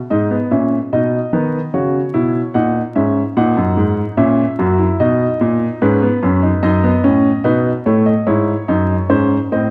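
Classical, baroque-style three-part fugue for solo baby grand piano, heard here as a short cut of under 10 seconds from a longer piece. The mood is joyful yet stately, moving in an even 4/4 with a straight feel. The piano sits up front with a warm, open tone and long sustain, ranging from F#2 to F#5 across its three voices. The harmony passes from G#m through C#m, F#, B and D#dim/F#, settling on C#m/G# before arriving on G# at 9.1 seconds. A wet recital-hall reverb surrounds the instrument, and the dark production carries a layer of vinyl crackle.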